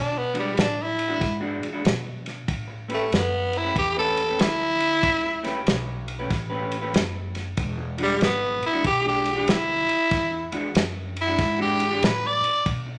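Set in a moderate large-studio reverb, this soulful, swaggering electric blues shuffle is cut from a longer piece and opens straight into a tenor saxophone solo. The growling tenor sits up front, raspy and gritty with jazz-style vibrato, carrying the melody over a swung 4/4 groove. Beneath it, an upright bass plays pizzicato on gut strings with a woody, thumpy tone, while an electric guitar through a small old amp repeats a bright, twangy, slightly broken-up picked riff colored by harmonic tremolo. The drum kit, entering at 0.3 seconds, is dry and muffled with a lo-fi, rolled-off top, dark cymbals, a fat snare and a tight kick, and it also sits up front. The harmony moves from E9 to A9 at 2.5 seconds and back to E9 at 7.6 seconds.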